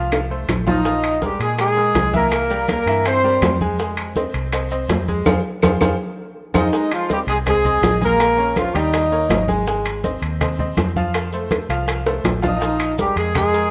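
A bright, worn concert grand piano with audible action noise and a dark, round, foam-muted electric bass open this driving, danceable salsa excerpt in F minor at 163 BPM, joined almost at once by a drum fill and a full Latin percussion bed. Close, hard-handed congas, tight high-tuned bongos and grainy maracas drive the groove, while ringing metal-shell timbales sit in the background and woody claves tick very quietly until 6.6 seconds, returning briefly at 12.8 seconds. A mellow, punchy horn section with vibrato sits up front, playing tight pop-style phrases that enter at 0.7, 6.6 and 12.4 seconds. The harmony moves through F7, Bb5, C7 and Fm7 before shifting to Fm11, Bbm7, Eb7 and Ab, and a band accent with a drum fill marks the turn between the two halves. It is a rough home demo mix with light reverb and studio ambience, and it is cut from a longer piece.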